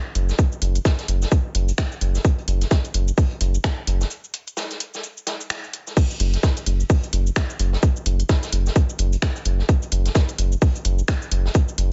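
Minimal techno at 129 BPM in 4/4 with a 59% 16th-note swing, sparse and quirky, built on an up-front tight electronic kick, a round, deep, nasal analog bass on F#1 pumping against the sidechain, a tape-warmed garage kit of crisp hats, cabasa, crash and finger snaps, and a distant, roomy big-band kit of hi-hat and medium-tuned snare, set in a dry mix with a muffled top and passing through a break from 4.1 s before the drop lands at 6.0 s.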